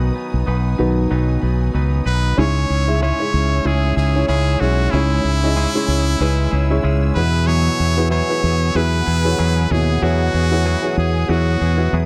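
This is a dry, close recording with a 1970s studio character, cut from a longer piece of piano-driven pop that feels uplifting and warm. At 94 BPM in 4/4 with a light swing on the sixteenths, a woody, vintage upright piano carries the accompaniment with long sustain. A fingered electric bass sits up front, its envelope filter giving it a punchy, amped edge. Behind it, a twangy, compressed clean electric guitar plays a picked riff, and a lush bowed string section holds smooth sustained chords. At 2.1 seconds a brilliant trumpet takes the melody with vibrato and forceful pop phrasing. The harmony moves from B to C#m at 2.4 seconds and settles on Eadd9 at 7.2 seconds.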